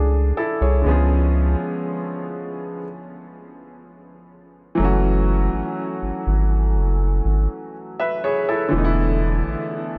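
Soaked in a huge, dreamy reverb, this longing, moody contemporary R&B excerpt at 61 BPM in F# minor pairs a clear, worn grand piano with a round, deep, dark analog bass up front, moving from Dmaj9 and C#7 through F#m7 to E7sus4, and breaking off into a stop from 2.8 to 4.8 seconds before the second section begins.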